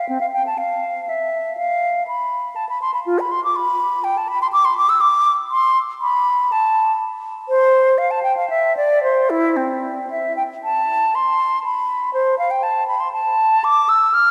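In a rubato triple metre, this flowing, dance-like baroque-style classical fantasia for unaccompanied flute features a single up-front silver concert flute, airy and mellow with vibrato and a soft attack, playing expressively from C4 to F6 inside a wet church reverb in a passage cut from a longer piece.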